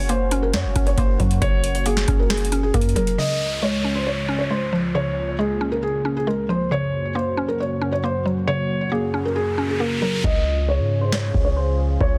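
Trap-style hip hop at 136 BPM in a half-time feel and Db major, dreamy yet triumphant, where a soft, felt-muted upright piano carries the melody up front through a low-pass filter and delay over a woody, warbling mallet-like synth pluck and a moody, detuned analog pad, while a deep 808-style bass and a booming, overdriven drum machine with crisp snare and metallic hats drop out at 3.2 seconds for a stretch of electronic downlifter and riser effects, then return at 10.2 seconds with the hats muted and a filter sweep, set in digital ambience with a dense, heavily limited master.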